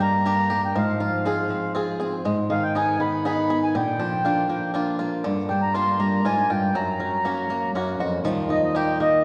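A mellow, reedy accordion carries the melody up front, its slow beating and tone-chamber color sitting high in the range over a short folk excerpt in a gentle three-beat sway. Beneath it, a fingerpicked steel-string acoustic guitar supplies a dark accompaniment, with a touch of finger squeak audible in its up-front sound. A bluegrass banjo, played with fingerpicks and set lower in the mix, adds bright, twangy, percussive arpeggios that sparkle behind the other two. All three play throughout the 9.2 seconds, moving through a drifting chord sequence that opens on Gm and comes to rest on Ebadd9. The recording is steeped in a lush concert-hall reverb with a soft, rolled-off top end, giving the peaceful mood a spacious, church-like glow.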